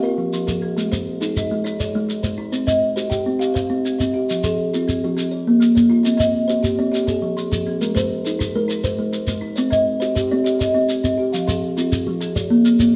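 Two kalimbas sound together from the start, weaving arpeggios into a rippling, hypnotic cycle of interlocking parts in the southern African traditional style, set in a straight 12/8. The louder kalimba sits up front with a woody, hollow-box tone and soft, mellow fingertip plucks. The quieter one rings out brighter from thumbnail plucks and reaches a little higher. A grainy shekere joins at 0.3 seconds, close and dry, giving a gentle acoustic texture beneath the tines. The harmony circles through Fm, Ab and Cm, and from 5.2 seconds Bb enters the cycle as well. The players sound live together in a stone room whose moderate reverb lets the tines linger, and the passage is cut from a longer piece.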